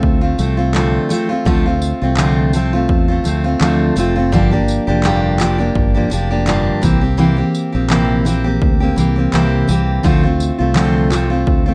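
Tender and reflective, this acoustic pop excerpt sets an up-front, full-bodied picked jumbo steel-string guitar, with audible finger squeak, over a round fingered electric bass and a punchy analog drum machine of kick, handclaps and tambourine re-recorded in a large room, all moving with a gentle sixteenth-note swing through Dm7, Gm7 and C7 before settling back on Dm7 at 10.0 seconds, captured by close, detailed microphones with light reverb.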